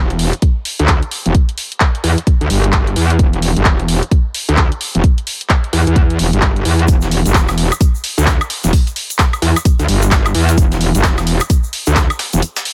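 Dry and close, this bouncy, gritty bass house excerpt runs at 130 BPM in E minor with a swung 16th-note feel. It is led by a metallic, distorted FM wobble bass with chorus and sidechain pumping, set up front beside a punchy electronic kick and a house kit of handclaps, bright hats and woodblock. At 6.9 seconds a pitched-up, tape-warm breakbeat kit of hi-hat, snare and tambourine enters in the background alongside a grainy egg shaker, before a brief break at 12.4 seconds.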